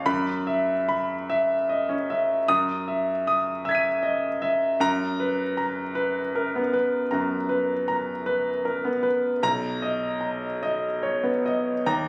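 Mysterious and hazy, this brief excerpt of impressionist classical music for solo concert grand piano drifts in a slow, rubato 4/4 at about 48-53 BPM, its clear, intimate, up-front tone spanning deep bass to bright highs with audible action noise, while lush extended harmonies from F#7sus4 through Emaj9/F# to a closing Bmaj7 at 9.4 seconds hang in light reverb on a phone-captured room recording.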